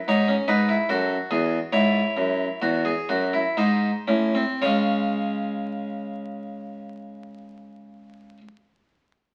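A bright, plucked French-style harpsichord with one set of strings sits up front and opens this solemn, serious fragment of a baroque-style three-part fugue in 3/4, slowing from 0.0 to 4.6 seconds within a 55-76 BPM range as its lines span E2 to C#5 over E, F#m, C#m and G# harmonies before a new section settles on C# at 4.6 seconds, all heard through a wet stone-room reverb and the crackle of a very old 78 rpm record.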